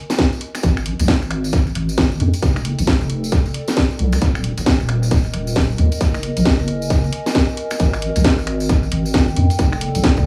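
A deep, softly wobbling bass with chorus and sidechain pumping anchors this sunny, soulful two-step UK garage clip, cut from a longer track, beside a tight, up-front electronic kick, a swung garage kit of finger snaps, bright hi-hats and a cracking snare sent through tape echo, a jingly tambourine with its own echo, and a warbly, nostalgic lo-fi pad that fades in from the start, its detuned chorus, built-in reverb and pumping sitting behind the rhythm in an echo-heavy mix with small room ambience.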